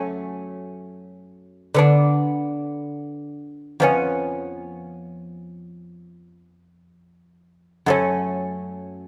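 A solo lute opens this serene, dance-like fragment in the baroque classical style, its delicate, fingerpicked gut strings sitting up front, with some courses doubled at the octave. Light reverb surrounds the lone instrument as it moves through a short, graceful chord progression before settling back home at 7.9 seconds. The passage is cut from a longer piece and lasts just 9.1 seconds.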